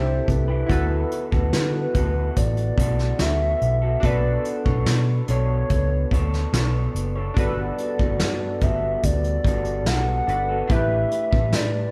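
Indie bedroom pop at a laid-back 72 BPM in D major, this hazy, nostalgic clip sets a warbling, wave-folded chorused lead melody over glossy, detuned retro synth keys, a dark, slightly broken-up lo-fi electric guitar with vibrato, a round, punchy foam-muted fingered bass and a distant, roomy brushed drum kit that enters at 0.3 seconds, all played live in one room with light reverb as the chords drift from Cmaj7 and D6 through Bm9 and Gmaj9 to A9sus4.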